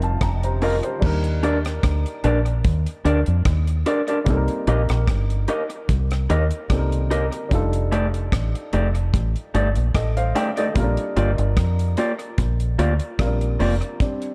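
Lovers rock reggae in Bb major at a relaxed 74 BPM with a gentle sixteenth-note swing, this tender, romantic excerpt opens with a dark baby grand piano fill over F7sus4 before moving through Ebmaj7, Cm7 and F13, as a deep, foam-muted fingered dub bass sits round and punchy up front, a dry reggae kit offers a tight kick, rim clicks, hi-hat and dark cymbal crashes, an electric guitar through a small old amp adds slightly broken-up, lo-fi, compressed stabs from 0.6 seconds, and the mellow, intimate piano, with its audible action noise, accompanies throughout in a small room with light reverb.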